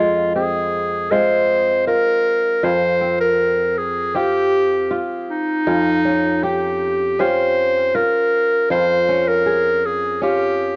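A clear, classical-style clarinet leads this delicate, intimate folktronica passage, singing its solo melody between Eb4 and C5, up front in the mix and trailed by delay. Beneath it, an acoustic kora plays fingerpicked arpeggios from F2 to Ab4, its ringing, crisp tone softened by a low-pass filter that sweeps across the whole 10.8 seconds, with its own touch of delay. The tempo sits at an unhurried 79 BPM in a straight 4/4, in F minor with tuning at A4 = 439 Hz. The harmony moves from Fm through C5/F and Eb7/F to Bbm13/F, holding to F underneath. A moderate studio reverb and a rolled-off top end give the sound a close, intimate quality, and the passage is cut from a longer piece.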